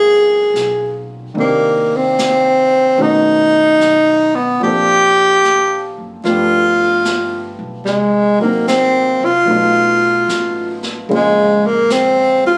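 Jazz ballad at 74 BPM with a gentle swing, wistful and melancholic, where a breathy, close-miked tenor saxophone sits up front carrying the solo melody with soft attacks and scooped notes over lush chords such as Gbmaj9, Cm9 and B7#11. A warm baby grand piano accompanies beneath it, a woody pizzicato upright bass stays in the background, and a natural-sounding brush kit of snare and hi-hat joins at 0.6 s. Captured on a phone in a studio room with moderate reverb, this 12.6-second passage is cut from a longer piece.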